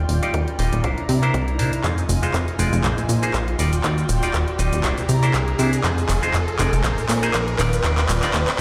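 Heard through a big sound system in a bare room with a moderate plate-reverb bloom, this nostalgic, sensual filtered disco house build-up at 120 BPM in F dorian, cut from a longer piece, sets a twangy, nasal clav and a reedy, gut-string studio string section over an up-front, funky sawtooth bass, all three low-pass filtered and pumping to the sidechain, while an overdriven analog drum machine with cabasa, handclaps and hi-hat and a very quiet, layered electronic kick join in, a drum fill runs from 1.8 seconds and a riser climbs in the background.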